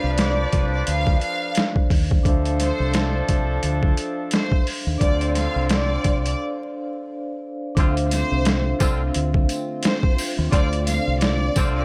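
Swung sixteenths drive this moody, reflective boom-bap hip-hop excerpt, where a gritty, overdriven sampler-style drum kit with a thumpy kick and high-tuned snare sits up front beside a round, dark fingered electric bass, while a distant, lush violin section carries the melody over mellow soft-mallet vibraphone with cassette-tape coloring and tight, vintage horn stabs trailing delay; after a break at 6.4 seconds, a hollow, flute-like pad with chorus enters at 7.8 seconds, and a jingly tambourine joins in the background at 8.1 seconds, all beneath studio reverb and vinyl crackle.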